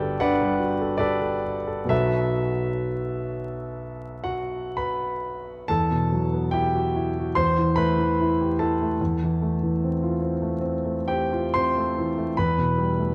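Nocturnal and hazy, this short fragment of impressionist solo piano drifts in E minor at a rubato pace of 56-80 BPM in 4/4, tuned to A4 = 439 Hz. A concert grand plays alone from start to finish, spanning G1 to C6. It sits up front, intimate and polished, with deep bass, long sustain and the mechanical noise of its action clearly audible. The harmony moves from Gmaj9 and B7sus4 into a second passage at 5.7 seconds that settles through Emadd9, Am7/E and Fmaj7/E over E in the bass, arriving on Emadd11 at 12.3 seconds. A moderate scoring-stage reverb, a dark, warm production and a layer of vinyl crackle give the sound a dusky, faded glow.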